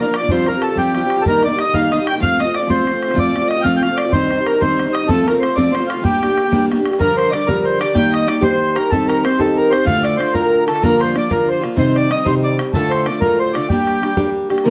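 A reedy, close-miked accordion carries the melody of this wild, driving Celtic jig in G minor at 125 BPM in 6/8, backed from the first moment by a boxy, picked archtop guitar that sits up front alongside it and a distant, woody fiddle with light vibrato playing a second line. A damped, tight bodhran adds percussion throughout, while the harmony moves through chords such as Eb, F and Gm before the second section shifts toward Gm7, Cm and Dm at 7.0 seconds. The dark production carries moderate studio reverb, and the whole thing is cut from a longer piece, ending at 14.7 seconds.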